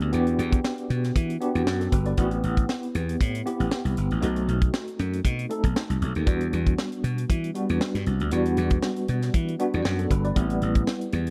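Polished 1980s jazz-funk pop in E minor moves at 117 BPM in 4/4, with a light swing on the sixteenths and a nocturnal, slick mood. A tight funk drum kit with a high-tuned snare, snug kick and hi-hat sits up front, sounding acoustic and natural in a small room. The slap bass is electric, direct and amped, with a growly, punchy bite that stays forward in the mix. Over them, a bright tine electric piano plays the accompaniment through a combo amp, clean yet worn and slightly out of tune, colored by a fast tremolo and lush chorus. All three parts play throughout the roughly 11-second passage, which is cut from a longer piece, as the harmony moves from Em7 to Am7, B7b9, back to Em7 and onto Am7 at 10.4 seconds. The sound is dry and close, like a 1970s-style studio recording with a touch of small room ambience.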